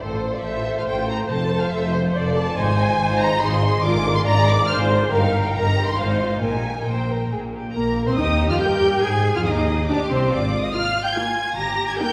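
Heard from further back on a reverberant scoring stage, this lively, cheerful excerpt of a quick classical-period movement for string orchestra in Eb major, at 141 BPM in 3/4, sets a lush, expressive first violin melody over a focused second violin line, a smooth-topped viola accompaniment and a bass of intense cellos and even double basses, every section bowed with vibrato.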